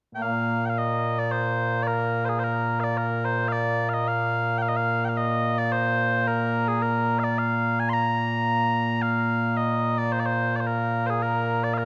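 Mellow small bagpipes carry this short cut of ceremonial, stirring Scottish pipe music on their own, their sweet, continuous tone sitting up front from 0.1 to 11.8 seconds in a straight four-beat pulse. The tune states its opening strain and begins it again at 9.0 seconds, spanning a broad compass from low to high. A wet reverb with the spaciousness of a scoring stage surrounds the pipes and lends them a lingering, hall-like glow.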